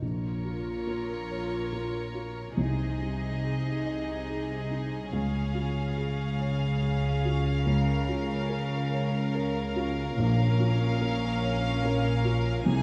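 A cinematic, emotional film score in a rubato 6/8, bittersweet and moving, in which a dark chamber violin section sings the melody over a rich second violin line, a pure, floating viola section and a felt-muted upright piano with a mellow, intimate tone, while a distant cello section and a symphonic double bass section hold the bass, very quiet timpani sounds from 10.2 s to 11.4 s, and a wet scoring-stage reverb surrounds this passage cut from a longer piece.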